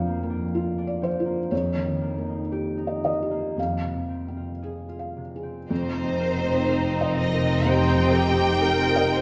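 Cinematic, emotional film score for orchestra, bittersweet and full of longing, moving in a slow, rubato 4/4. A felt-muted upright piano sits up front with a soft, intimate tone and audible action noise, joined from the start by a concert harp whose thumb-plucked arpeggios ring out. At 5.7 seconds the orchestra enters: a rich violin section carries the melody with focused vibrato, while a second, more distant violin line moves smoothly beneath it. Mellow French horns hold sustained chords in the background, supported by a dark, woody cello section and a double bass section on the low foundation. At 7.7 seconds a close viola section adds expressive accompaniment with portamento and soft attacks, all set in a moderate scoring-stage reverb in this cut from a longer piece.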